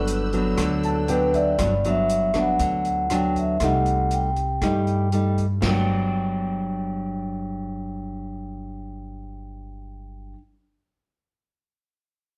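A band playing live in one room, wrapped in a wet studio reverb, opens this sunny, romantic bossa nova excerpt in G major at 119 BPM in a straight 4/4, cut from a longer piece. A vibraphone with soft mallets, its motor off, carries the melody between A4 and G5 with a mellow, ringing, metallic tone, while an up-front, thumb-plucked nylon-string guitar supplies classical-style accompaniment over an upright bass whose woody, thumpy pizzicato spans G1 to G2. In the first 1.6 seconds a natural-sounding baby grand sits in the background and plays a fill from 0.6 s, alongside a distant, lush violin section holding bowed chords with vibrato, soft attacks and expressive portamento. An open jazz kit with dark cymbals, a medium-tuned snare, rim clicks and a boomy kick adds a smooth, rolled-off top until 5.7 s. The harmony moves from Gmaj7 to Cm6 at 3.6 s before settling back on Gmaj7 at 5.6 s, leaving vibraphone, guitar and bass to carry the closing seconds.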